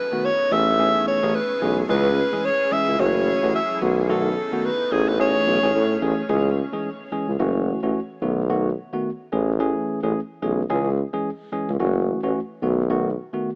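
Sultry and hypnotic, this afrobeats passage, cut from a longer piece, opens with a breathy, whispered alto saxophone melody with scooped notes and tape echo, floating over a glassy, ethereal FM pad that sits mellow in the background. A clean tine electric piano through a combo amp and a warm tuba bass with light vibrato stay up front, and they carry on alone once the saxophone and pad drop out around 6 seconds. The sound is dry and gritty, with a small-room reverb and a small-speaker character.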